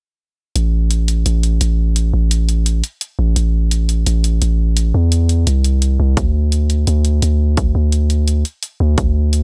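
Dark and heavy, this half-time drum and bass excerpt moves at 171 BPM in A minor with a light swing on the sixteenths. A deep, mellow, sine-like 808-style bass sits up front from 0.6 seconds, its long notes striking quickly and decaying, while bright, layered electronic hi-hats carry a small-room character beneath it. A hard-clipped electronic kick drum punches in up front at 6.2 seconds, all within a dry, close sound.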